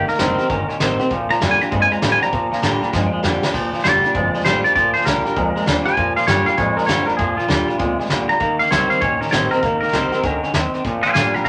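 A twangy electric guitar leads this upbeat, retro rockabilly excerpt, carrying the melody up front with a clean, compressed, scooped tone and taking a solo over the opening 3.5 seconds. A second twangy electric guitar plays a riff underneath, its fingered tone washed in spring reverb, while a picked dreadnought acoustic guitar fills in full-bodied accompaniment. The pizzicato upright bass sits lower in the mix with a woody, thumpy gut-string sound. A soft brush drum kit enters at 0.1 seconds, heard distant and roomy with dark cymbals, a medium-tuned snare and a tight kick, and plays a fill from 2.9 to 3.5 seconds that leads into the second section. The tune moves at a brisk 197 BPM in 4/4 with a swung eighth-note feel in Bb major, set in a moderate club reverb.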